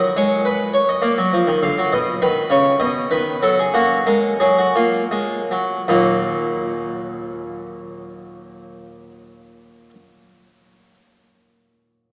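Classical baroque-style suite movement in 6/8 with free rubato, this brief excerpt from a longer piece features a solo Italian-style harpsichord, airy and full with two sets of strings, plucking a flowing, grave line that slows from 1.0 to 5.9 seconds before settling onto E-flat minor, its close, up-front sound bathed in a cathedral reverb with a long six-second tail as if heard from further back in the room.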